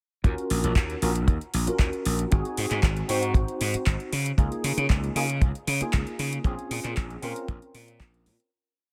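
A growly, overdriven slap bass jumps octaves up front over a tight, dry four-on-the-floor kick in this sensual, groovy nu-disco piece at 116 BPM in Eb dorian, where a clean tine electric piano plays syncopated rootless chord stabs with ensemble chorus, sidechain pumping and tape echo through Ebm9, Ab7, Db69 and Bbm7, while an electronic pop kit adds metallic hi-hats and handclaps in a disco backbeat before the whole piece fades out from 5.8 seconds.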